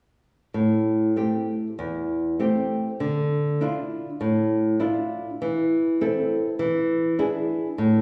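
A wet recital-hall reverb with a decay of 1.4 seconds surrounds this brief fado passage, with the room itself heard from further back and carrying a small-room ambience. In the middle of that space sits a lone nylon-string guitar, placed up front and fingerpicked, its tone dark and small, with finger squeaks audible on the strings. Played in 4/4 with a free, rubato feel, it carries a mournful, longing mood as it accompanies from 0.5 to 8.0 seconds across a range from E2 to A4. The harmony moves from Am7 to Dmadd9 at 3.0 seconds, then through Am/E and on to E7 at 6.6 seconds, leaving the phrase suspended as this fragment of a longer piece breaks off.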